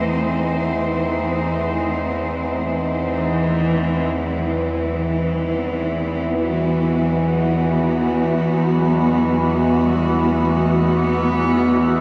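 Dark ambient drone at 53 BPM in 4/4, dark and unsettling, cut from a longer piece and bathed in huge, wet reverb. An up-front, lush cello section holds sustained chords over a nasal, overtone-sweeping drone with chorus, while a very quiet bubbling texture of random filter steps flickers above, and the harmony moves from Am/E to Em at 4.2 seconds. From 3.1 seconds a single bowed cello adds a very quiet, focused melody with vibrato.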